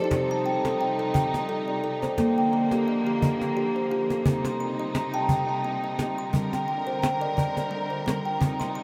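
Swung sixteenths in a lilting three-beat metre give this meditative world excerpt its hypnotic sway, with an up-front cajon adding a woody, compressed and saturated pulse with faint snares from 0.1 seconds. A ringing, hollow-box kalimba plays thumb-plucked arpeggios through delay and shimmer reverb, while a studio string section holds smooth, bowed chords with light vibrato. The harmony moves from Cm to Bb and then from Cm to Gm, all set in a vast, echoing space with a huge ambient reverb.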